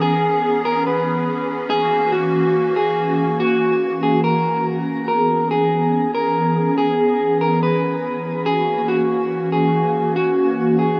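Awash in a long shimmer reverb, this floating, blissful hip hop piece moves at 142 BPM in a half-time feel, set in E lydian and cut from a longer piece. A hollow, flute-like pad with a warbling, vintage chorus sustains chords throughout, while an up-front electric guitar, dark and slightly broken-up, carries the melody through a low-pass filter and delay. The harmony sways between E6 and F#7 across two sections, the second starting at 5.1 seconds.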